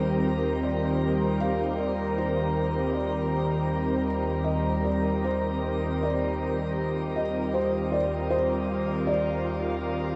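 A soft, organ-like pad opens this short ambient excerpt with one sustained Ebmaj13 chord in Eb major, its pure, detuned sine tone sitting up front with ensemble chorus and its own reverb while a filter sweep shapes it across the full 10.2 seconds. From 0.3 seconds a felt-muted upright piano fades in with a quiet melody, its mellow, boxy sound carrying audible action noise and a diffuse ambient delay. At a slow 79 BPM in a straight 4/4, the dark production and long shimmer reverb leave a luminous, serene mood.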